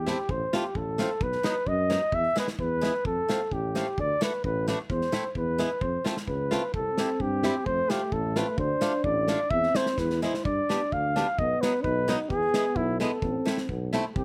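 A mellow flugelhorn with light vibrato and a smooth top carries the jolly, bouncy melody of this alpine dance band excerpt in 2/4, riding over a distant, roomy tuba bass, a bright, boxy picked swing-style acoustic guitar, and a loose drum kit with a tight kick and a medium-tuned snare in a small, pumping room, while a mellow euphonium joins on a second line at 6.7 seconds and a drum fill arrives at 10.0 seconds.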